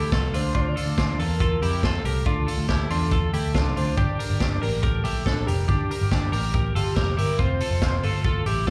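Heard as a live gig through a club's PA, this short cut from a longer piece of jangly indie pop carries a wistful, restless mood at 140 BPM in a straight 4/4, set in D minor with the tuning pitched slightly high at A4 = 442 Hz. A twelve-string electric guitar rings out bright, twangy and compressed arpeggios, dressed in plate reverb and slapback echo, while a soft octave-layered synth lead sings the melody between G4 and D5 with a round, detuned tone, a sub octave beneath it, vibrato, chorus, and its own plate reverb and slapback echo. Underneath, a vintage muted picked electric bass sits dark and foam-muted, the loudest of the parts, moving between F1 and F2. A vintage drum kit joins at 0.1 seconds with hi-hat, a punchy kick and a medium-tuned snare, sitting up front with a rolled-off top. The harmony moves from Dmadd9 to Gm at 4.0 seconds and reaches F at 7.4 seconds before the cut ends.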